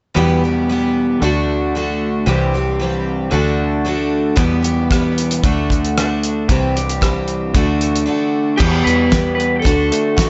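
A lightly reverberant recording with its highs capped at 7.9 kHz carries this reflective, wistful folk rock and heartland rock excerpt in a straight 4/4, where a shimmering, octave-doubled twelve-string acoustic guitar with finger squeak and a slightly broken-up, compressed electric guitar riff through a small old amp sit over a round, foam-muted fingered bass, a cloth-damped, thuddy drum kit with a fat snare and dark cymbals joins at 4.4 seconds, and an electric slide guitar melody played with fingerpicks and bathed in plate reverb and analog delay arrives at 8.6 seconds.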